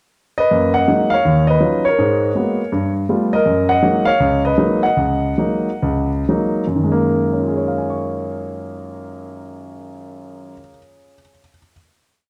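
Heard up close in a large studio with moderate reverb, a single concert grand piano sounds intimate and natural, its deep bass and the audible clatter of its action caught close to the listener. This short, complete solo jazz piece in F# major swings its eighth notes at 114-164 BPM: a stride bass and close voicings carry a hook-based melody through F#69, D#m9, G#m9 and G9 before returning to F#69. From 3.4 s the tempo slows, and from 6.8 s a final chord rings until the piano falls silent at 11.7 s.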